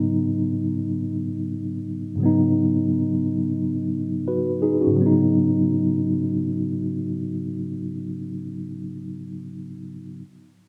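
A mellow, clean tine electric piano plays alone and up front through its built-in speakers for about 10.2 seconds, opening on a G#m7 chord and ranging from low to middle register in this soulful, introspective free-time R&B passage in G# minor, cut from a longer piece and bathed in a lush hall reverb within a rough home-demo mix.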